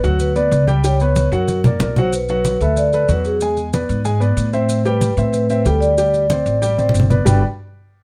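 A ringing, dark vibraphone played with soft mallets and the motor off carries the melody from 0.2 s in this sunny, lively Afro-Cuban jazz excerpt in G major at a brisk 187 BPM, over a growly, up-front pizzicato upright bass, an intimate vintage upright piano with audible action noise and long sustain comping through chords from Gmaj7 to Bm7, E7, Am7 and D7sus4, damped low-tuned congas and grainy, close maracas, all captured with close, detailed microphones and light reverb.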